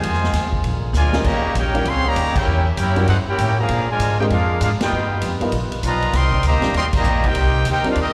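Heard as a live gig through the venue's PA, with small room ambience and recital hall reverb, this short big band swing excerpt moves at a brisk 196 BPM in 4/4 with a joyful, energetic lilt. Up front, a bright trumpet section carries the melody with a slapback echo, while a distant, roomy trombone section with vibrato plays a second line, also touched by slapback echo. Beneath them, a very quiet muted trombone section holds nasal, straight-muted chords, and a woody pizzicato upright bass sits close and prominent. The swinging big-band drum kit has dark cymbals, a medium-tuned snare and a punchy kick, and plays a fill at 0.9 seconds, while band accents land at 2.3, 4.8 and 6.9 seconds. A dark, mellow baby grand piano with audible action noise and short sustain enters at 1.1 seconds for accompaniment, its sound also carrying slapback echo, as the harmony moves from Fm7 through Bb7, Eb7, Edim7 and G7alt before landing on Cm7.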